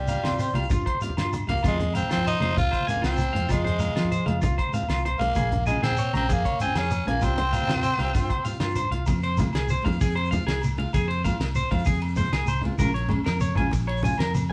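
Highlife guitar band music in a straight 12/8 feel, danceable and warm, heard in a short excerpt cut from a longer piece. A raspy, gritty tenor saxophone leads up front with vibrato, carrying the melody until 8.8 seconds, just as a drum fill on the damped 70s kit, with its fat snare and tight kick, carries the band into the next section at 9.1 seconds. Beneath it, a round fingered electric bass anchors the harmony, while a twangy, slightly broken-up electric guitar spins arpeggios through a phaser and a small fingerpicked nylon-string guitar fills in the accompaniment. Low-tuned congas with a bright, thin skin, a grainy shekere and ringing agogo bells sit in the background, adding layers of percussion. The chords move between Csus4, Fm and Bbm7, and the whole band plays live in one room with a moderate large-studio reverb.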